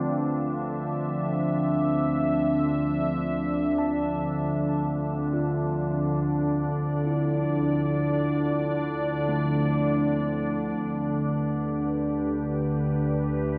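A morphing wavetable pad sits up front from the first moment, holding slow-attack chords with a vintage, warbling sine tone that is thickened by chorus and its own reverb. Beneath it, a mellow tine electric piano fades in with clean arpeggios, sitting in the background and trailing off into a diffuse ambient delay. A bowed chamber double bass section also fades in, holding a low, smooth and even note with gentle vibrato as a soft ensemble foundation. The harmony rests on Dm7 before shifting to Em/D at 10.8 seconds, giving this reflective, serene ambient passage a quiet sense of movement. A wet cathedral reverb and a dark, warm production wrap the whole excerpt in a spacious, drifting haze.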